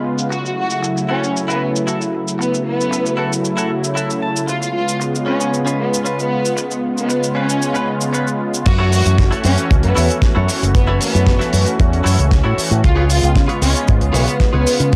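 Cosmic and groovy, this nu-disco excerpt at 115 BPM in F# minor moves between F#m7 and C#7 over a warbling, detuned analog pad with sidechain pumping, a bright, twangy clean electric guitar riff with lush chorus and a fill at 3.7 seconds, a damped 70s drum kit of dark cymbals, hi-hat, snare and cabasa, and a rich, bowed violin section carrying the melody with vibrato and analog delay, until the drop at 8.7 seconds brings in a punchy envelope-filtered fingered bass and a tight, dry kick up front, all coloured by cassette tape and a moderate spring reverb.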